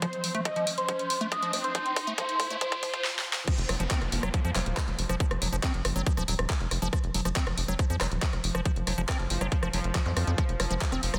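Cut from a longer psychedelic trance track, this alien, driving passage opens on a build-up in which a thick, nasal unison lead with phaser and delay, a squelchy liquid acid bass under a filter sweep, a bright pulsing gated texture and a brief wobbling vowel-sweep bass in the background ride sidechain pumping, while an overdriven electronic kick, a garage drum kit with a cracking snare and background risers and zaps push toward the drop at 3.5 seconds, where a punchy, dark sawtooth sequencer bass takes hold up front.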